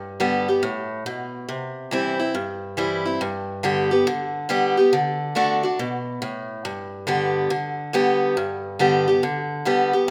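A boxy, up-front picked acoustic archtop guitar plays alone through this heartfelt, easygoing country excerpt at 140 BPM with a swung 4/4 feel in G major, moving from G to C, back to G, then D and home to G over about 10.1 seconds, its audible finger squeaks set in a moderate recital-hall reverb.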